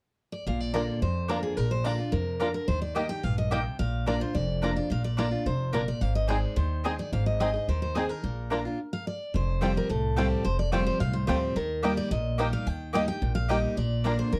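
Driving and rustic, this bluegrass fragment, cut from a longer piece, rolls along in a straight four-beat feel with a dark production and light reverb. One picked steel-string guitar carries the melody alongside a twangy, percussive banjo played with fingerpicks, while a second guitar supplies the chordal accompaniment; the pair comprises a full-bodied dreadnought sitting up front and a bright auditorium model with fresh strings. Underneath, a thumpy, woody upright bass with gut strings is plucked pizzicato and placed prominently in the mix. A bright mandolin, its doubled strings ringing, punctuates the groove with picked stabs. The band moves through Bb, Eb and Ab before a brief stop from 8.8 to 9.3 seconds, then resumes on an Fadd9 chord for the next section, ending back on Bb.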